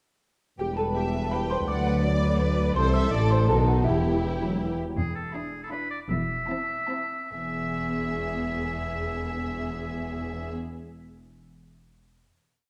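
At 0.6 s, a woody, soft-mallet xylophone tune and a bowed violin section open this playful, sneaky, magical film cue in three, over violas doubling the tune, mellow horn chords, and cellos, double basses and tuba on the bass, while a second violin section soon adds a lush counter-melody; as the tempo slows, the xylophone, horns and tuba drop away, and a clear, distant oboe carries a second line from 5.0 s to a final held chord at 7.3 s, all set in a dark, reverberant scoring-stage sound.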